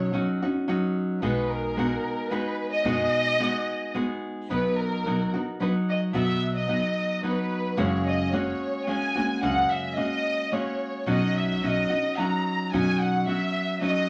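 A dark, bowed violin section and a fingerpicked nylon-string guitar open this proud, festive mariachi excerpt in B major, moving in 3/4 at 110 BPM with a straight feel. The violins carry the melody up front, their tone woody and shaded with vibrato, while the classical guitar sits close beside them with a warm, acoustic accompaniment. At 1.2 seconds an upright bass joins in the background, its gut strings plucked with a thumpy, shadowy weight, and it continues until 12.9 seconds. The harmony moves from Badd9 and B6 through plain B and F#add9 before returning to Badd9, and the opening phrase comes round again at 4.5 seconds. A wet studio reverb with a short decay gives the ensemble a lively room around it, and the piece is cut from a longer performance.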